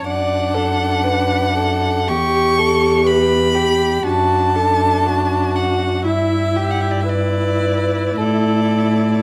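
In a rubato 4/4 pulse around 54-63 BPM, this serene, lyrical slow romantic movement for string quartet in D major, tuned to A4 = 441 Hz, unfolds in a passage cut from a longer piece. A rich, close-sounding first violin carries the expressive melody with vibrato and portamento, over a dark second violin with a smooth top, a warm viola accompaniment and an even, gently vibrated cello bass sitting up front. The harmony moves from D/F# through Em and Em/G to an open A5 at 8.2 seconds, all bathed in a wet stone-room reverb.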